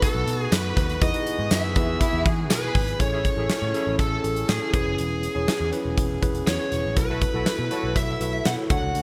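A glossy, uplifting slice of 1980s-style pop, cut from a longer piece, opens with a huge arena drum kit up front, its fat snare and punchy kick joined by hi-hat and tambourine, as a dark, distorted lead guitar carries a bluesy picked melody over a worn, slightly out-of-tune tine electric piano. A warm brass ensemble holds smooth, classical-style sustained chords in the background, while a round, foam-muted vintage electric bass anchors the low end. At 2.0 seconds a lush studio violin section adds a brief, expressive second line with vibrato and portamento. Bold, detuned analog synth brass stabs with a filter sweep and chorus sit behind the mix at 3.1 and 7.1 seconds. Digital delay and plate reverb give the guitar and violins a glossy sheen within a light room reverb, as the harmony moves from B7 to Emaj7, then through Amaj7 and E6 to B7sus4.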